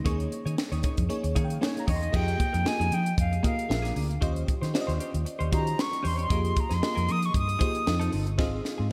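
An airy silver concert flute with vibrato carries the melody from 1.6 s over a slick, urban 1980s jazz-funk pop groove at 115 BPM with a light 16th-note swing, supported by a round, foam-muted fingered bass, a crisp fusion kit with a high-tuned snare and gated reverb, a sparkling bell-like FM electric piano that adds a fill at 1.1 s, and a dark, compressed clean guitar riff bathed in lush chorus, all in a bright digital production that closes on a drum fill at 8.4 s.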